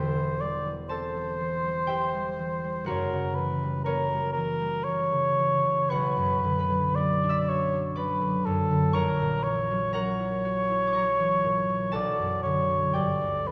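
A dark cor anglais with light vibrato and a smooth top sings a melancholic, yearning B minor melody over a mellow, ringing, fingerpicked concert harp in this rubato romantic classical duo at 60 BPM in 3/4, both parts up front within the wet reverb of a scoring stage heard from further back in the room, in a passage cut from a longer piece.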